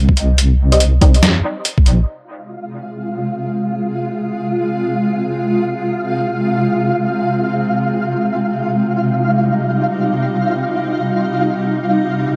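Deep dubstep in free time, cavernous and brooding, cut from a longer piece: a wobbling, chorused sawtooth bass, an overdriven knocking kick and a gritty, pitched-down sampler-style kit with hi-hat and a medium-tuned snare fill the opening two seconds, while a muted, nasal chord stab with phaser and dub echo appears briefly at 0.7 seconds. From 2.4 seconds a flickering granular texture enters, joined at 2.6 seconds by a cloudy, evolving pad with built-in reverb, and the two take over, sustaining through to 12.4 seconds. The dry, gritty hardware recording carries only light reverb, keeping the drums and bass up front.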